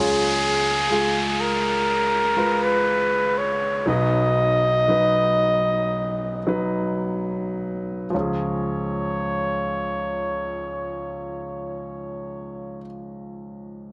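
In a straight 4/4 pulse at 53-62 BPM that slows through the first 8.1 seconds, this hopeful, emotional pop excerpt in D-flat mixolydian moves from Db to Cb and back to Db. A solo flugelhorn carries the melody with scooped notes, a roomy delay-touched tone and a pop phrasing, over an up-front grand piano whose accompaniment rings with long sustain. A barely audible fingerpicked parlour guitar adds arpeggios only until 0.5 seconds, while an electronic downlifter sweeps beneath until 8.1 seconds, all in a softly reverberant studio sound with a mellow, rounded top.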